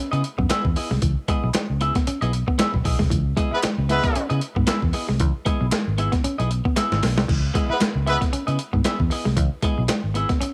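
A gritty, tape-warm breakbeat kit with a thumpy kick and crash cymbal drives this sly funk groove on swung sixteenths, joined by a round, foam-muted fingered bass, a twangy clean electric guitar riff, a second compressed clean guitar playing accompaniment higher up, and very quiet, crisp group handclaps, with a drum fill at 6.8 s and brief roomy horn-section lines with light vibrato arriving at 3.5 and 7.7 s.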